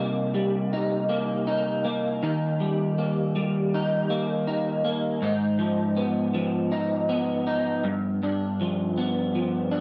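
An electric guitar played alone through a small old amp, picked, slightly broken-up and compressed with ensemble chorus and vibrato, sits up front in this dreamy, sunny indie pop excerpt at 80 BPM in 4/4 with a light sixteenth-note swing in Eb major, moving through Cm7, Eb, Abm6 and G7 across 9.8 seconds in a dry, close 1970s-style studio sound with digital ambience.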